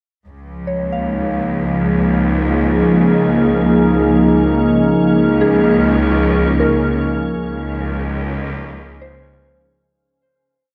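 Ambient piece in Db major at 75 BPM in 3/4, peaceful and serene, resting on a held Db chord that turns to Bbm7/Db at 7.4 seconds. A warm analog pad carries the sustained chords up front, its detuned sawtooth tone smooth and chorused, with a soft attack and slowly shifting harmony. Beneath it a bright symphonic cello section holds a bowed, lush root on Db2 with focused vibrato. A calm organ-like drone of detuned sine unison fades in, sustained with a slow attack and long release, wrapped in ensemble chorus and its own reverb. A soft FM synth bell scatters pure, mellow arpeggio notes with fast attack and decay, fading in, chorused and trailed by dub echo. The whole short piece sits in a wet spring reverb with an echo-heavy mix, and it fades out from 6.6 seconds to 9.8 seconds.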